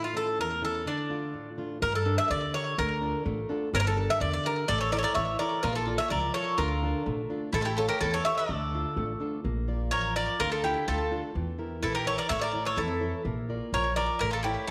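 A straight 2/4 pulse carries this tense, intense stretch of Greek folk music, cut from a longer piece, as a metallic, up-front bouzouki with slapback echo leads the melody over a full-bodied fingerpicked steel-string acoustic guitar whose finger squeaks come through. A dark, thumpy pizzicato upright bass joins at 1.8 seconds, and a bright bowl-back mandolin adds a second line from 4.7 seconds. The band sits in a wet echo chamber reverb with studio ambience, and the harmony moves through minor chords, a diminished chord and a dominant seventh.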